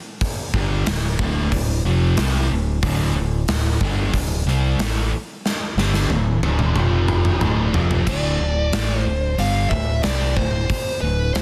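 In straight 4/4, a gated 80s drum kit with a punchy kick and bright cymbals drives this menacing hard rock fragment, joined at 0.5 seconds by a sludgy, double-tracked distorted guitar riff and an overdriven fingered bass, before a drum fill from 5.5 seconds ushers in a dark, smooth lead guitar with slapback echo at 8.1 seconds, all set in light small-room reverb under a dense, heavily limited master.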